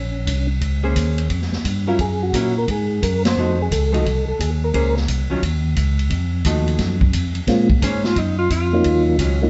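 Heard from further back in a moderately reverberant club with a muffled top end, this bluesy, smoky soul jazz organ trio swings as a mellow, flute-like percussive tonewheel organ carries the melody over a fat tonewheel organ bass with key click and slow rotary speaker, a punchy big-band drum kit and a dark hollow-body archtop guitar in accompaniment, with a band accent at 3.2 seconds, before a subtoned alto saxophone with light vibrato enters at 7.9 seconds for a brief, distant solo.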